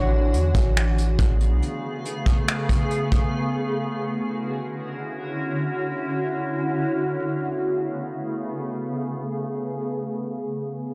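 Atmospheric cloud-rap in free time and A major, this dreamy, floating fragment of a longer piece rests on a cloudy, granular pad that holds sustained chords through all 10.2 seconds, moving from Amaj9 to Dmaj9 at 3.3 seconds and back, shaped by its built-in reverb, a low-pass filter and sidechain pumping. At the start, a ringing, fingerpicked Celtic harp plays brief arpeggios through digital delay in the background, while a deep, boomy 808-style bass with transformer saturation sounds up front for the first 1.6 seconds. A distant, roomy brush kit with a punchy kick, hi-hat, finger snaps and soft clipping on the snare enters at 0.3 seconds, and the whole recording has a blown-out, overdriven character set in light studio ambience.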